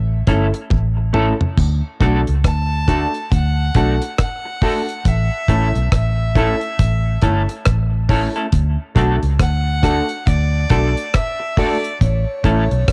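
Roots reggae at a relaxed 69 BPM in D major, this short cut from a longer piece feels warm and uplifting, with a swung sixteenth-note lilt and chords moving between A and D. The deep drum kit sits up front with a dry, tight kick, hi-hat, rim clicks, toms and splash cymbal, and a fill rolls through at 0.7 seconds, its sound carrying a cassette-tape grit. Beside it, the muted fingered electric bass is round, dark and foam-muted, holding the low end up front with a touch of transformer saturation. A clean, picked electric guitar shimmers through harmonic tremolo and dub echo, while a woody, smooth upright piano adds vintage-toned stabs in the same register. From 2.5 seconds a single distant violin carries the melody with a reedy, gut-string, period-style tone, light vibrato and its own dub echo, and the whole take has the homespun feel of a cassette recording in a studio reverb.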